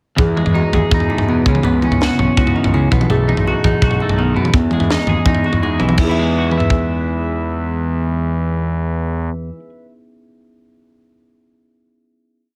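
A short, complete math rock and midwest emo piece in E major at 166 BPM, playful and intricate, with a twelve-string electric guitar rolling bright, twangy arpeggios over a woody, ringing kalimba ostinato and a punchy, fuzz-overdriven fingered bass riff that syncopates beneath them. A crisp fusion drum kit with a high-tuned snare, tight kick and grooving toms sits up front in a small-room sound until 6.8 s, driving the changes from Emaj7 through C#m7, B7 and Emaj9. At 6.0 s the band lands on a final E chord that rings out in moderate studio reverb, the guitar sustaining to 9.9 s.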